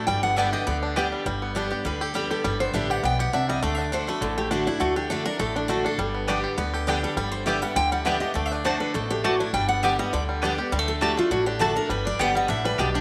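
Virtuosic and lively, this bluegrass passage in G major races along at 203 BPM in 4/4 with a light swing on the eighth notes, and it is cut from a longer piece. Up front, a picked dreadnought steel-string guitar carries the melody with a warm, full-bodied tone, alongside a twangy, percussive banjo played with fingerpicks and touched by a slapback echo. A second dreadnought guitar, bright and picked, supplies the accompaniment, while a dark, thumpy upright bass with gut strings plays pizzicato with a woody bottom end. In the background, a double-strung mandolin adds picked stabs, first briefly at 0.4 seconds and then again from 6.3 seconds on. The chords move between G and D, and a moderate echo-chamber reverb gives the ensemble a roomy sheen.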